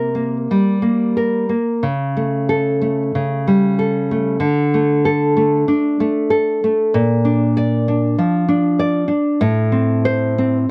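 A dark, fingerpicked nylon-string guitar sits up front in this intimate, passionate romantic piece for solo classical guitar, moving at 95 BPM in 4/4 with uneven, rubato timing. Across this 10.7-second excerpt from a longer work, its range spans A2 to D5 over chords shifting from C5 through A7/C#, D5 and Bb before settling on Am. The close, dry 1970s-style studio sound carries only a light touch of reverb.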